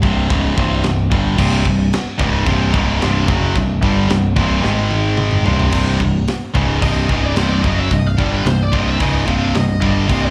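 This is a clip from a longer heavy metal performance, heard as a live gig through the venue's PA with a touch of club reverb. It moves at 110 BPM in a straight 4/4, aggressive and heavy, built on C5 and Ab5 power chords before settling onto C minor. An up-front, bright, high-gain distorted guitar drives the riff from the start alongside an overdriven, growly picked bass and a tight metal kit with a medium-tuned snare, a tight kick, a rolled-off top, and china, crash, hi-hat and toms. A second distorted riff guitar joins at 1.4 seconds, sitting in the background. After a drum fill at 4.7 seconds, the solo section begins, and a darker, high-gain lead guitar with slapback echo enters at 6.8 seconds, playing a melody higher up.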